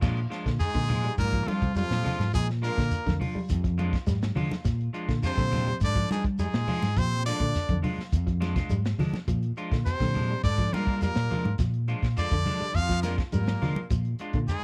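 Joyful and hypnotic, this afrobeat excerpt rides a single Bb7 chord in a dry, close 1970s-style studio sound, anchored by a round, punchy fingered electric bass, a saturated breakbeat drum kit with a rolled-off top, a grainy shekere and soft-handed congas in the background. Two electric guitars with spring reverb sit underneath, one dark and slightly broken-up playing arpeggios, the other clean and picked with stabs. From 0.6 s a brilliant, forceful trumpet carries the melody with vibrato, supported by a raspy baritone saxophone and a plunger-muted trombone with a wah-wah tinge, both set back in the mix.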